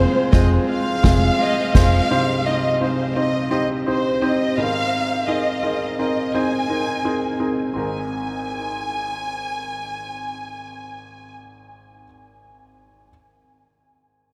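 A clear, up-front concert grand piano carries this anthemic, hopeful piano-driven pop excerpt in Ab major at 85 BPM, joined by a lush, expressive violin section singing the melody with vibrato through a diffuse ambient delay, while a dark, foam-muted picked electric bass and a background acoustic drum kit with dark cymbals and bundle sticks mark a band accent until 2.0 seconds, all steeped in a dreamy cathedral reverb as the chords move from Fm to Cm to Abadd9.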